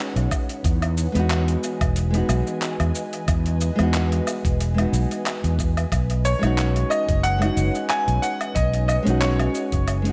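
An echo-heavy, softly ambient mix opens this warm, smooth sunset chillout excerpt at 91 BPM in B major, where a barely audible downlifter sounds until 0.6 s as a dark, fingerpicked nylon-string guitar with analog delay and an ethereal, mellow pad with ensemble chorus carry chords from B69 to Emaj7, a round, up-front fretless bass and a gritty, tape-warm sampler-style kit of cabasa, handclaps, hi-hat and woodblock with dub echo join alongside a thumpy electronic kick, and a brilliant concert grand piano with tape echo enters with the melody at 6.2 s.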